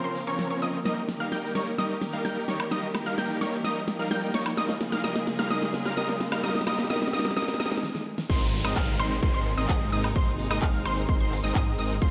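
Festival progressive house with an anthemic, euphoric mood, this short cut from a longer track opens on a build-up where huge, lush supersaw chords carry the riff up front, treated with sidechain pumping, a low-pass filter and dub echo. Above them a detuned unison pluck spins lush arpeggios through a filter sweep and dub echo. Distant chamber strings sustain expressive bowed chords in the background, and a very quiet riser and downlifter add electronic effects. A pop drum kit with a fat snare, crisp hats, handclaps, woodblock and crash and ride cymbals runs a fill through the build, and everything stops briefly at 7.8 seconds. At 8.3 seconds the drop lands on an Abadd9 chord, bringing in a punchy, overdriven electronic kick and a thick, dark detuned saw bass with chorus. A wet scoring-stage reverb gives the mix a spacious, festival-sized sheen.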